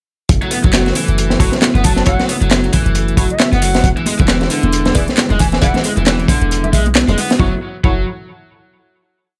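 Lightly reverberant and swaggering, this energetic breakbeat track in F# minor at 135 BPM rides a swung sixteenth feel. An up-front, saturated looped break with a punchy kick and high-tuned snare is layered with a metallic house machine kit of hats and claps, a boomy dotted-rhythm 808-style bass, and an overdriven garage guitar riff repeating a 16-step sequence. A mellow tonewheel organ pad sits in the background with slow rotary motion, sampler grit and sidechain pumping, while sparse, muted sawtooth dub stabs echo through phaser from 1.4 seconds. An airy wooden flute with vibrato arrives at 1.8 seconds through a telephone-style filter and delay, and dry, ringing congas join at 3.8 seconds, before the drop moves from F#m7 to E7 and resolves on a final F#m7 chord at 7.4 seconds.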